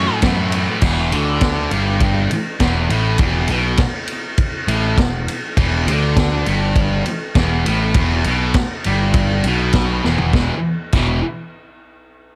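Garage rock at 101 BPM with a rowdy, swaggering mood, this excerpt cut from a longer piece pairs a thick, bright, double-tracked fuzz guitar riff up front with an overdriven, fuzzed electric bass, both playing throughout, over a vintage acoustic drum kit with a punchy kick, medium-tuned snare, dark cymbals and rolled-off top that enters at 0.2 seconds and drops in a fill at 10.0 seconds, all set in studio reverb with a faint mains hum.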